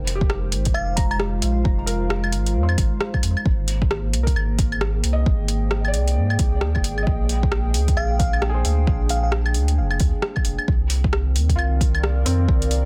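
Melancholic and nocturnal, this future garage excerpt moves at 133 BPM with a swung 16th feel in F dorian, as a round, up-front sine sub bass and an overdriven electronic kick anchor a dark, detuned, wave-folded analog pad with chorus and sidechain pumping, while an overdriven deep house kit of claves, metallic hi-hats and rim clicks drives alongside a soft, felt-muted upright piano with audible action noise, 12-bit sampler grit and tape echo, and a sparkling, warbling FM electric piano adds brief bell-like phrases at 0.7 and 8.0 seconds over Fm7, Abmaj9, Bb13 and Cm11 chords in a dry, dense, heavily limited mix.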